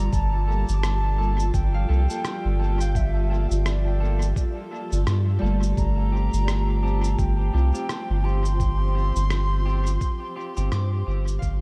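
A deep, round sub bass sits up front in this spacious, hazy ambient dub excerpt, joined by a muffled, thumpy kick, a pitched-down shaker and rim click with dub echo, a cloudy, evolving granular pad holding a Gm9 chord, ringing fingerpicked Celtic harp arpeggios with analog delay in the background, clean picked electric guitar stabs with subtle chorus and echo, and a pure wooden flute melody with vibrato and dub echo, before everything fades out from 9.5 seconds.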